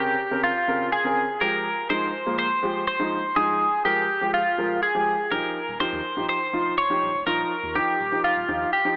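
A bright, twangy twelve-string electric guitar carries the melody up front, its clean picked lines compressed and bathed in spring reverb, while a polished, present baby grand piano plays accompaniment beneath it. This confident, driving dance-pop clip moves at 123 BPM in a straight 4/4 in F minor, passing through Bbmadd9, Fmadd9 and then Ebadd9 at 5.3 seconds, when a deep, round sine sub bass enters in the background until 8.6 seconds. A lush hall reverb and an AM radio sound give the short passage its character.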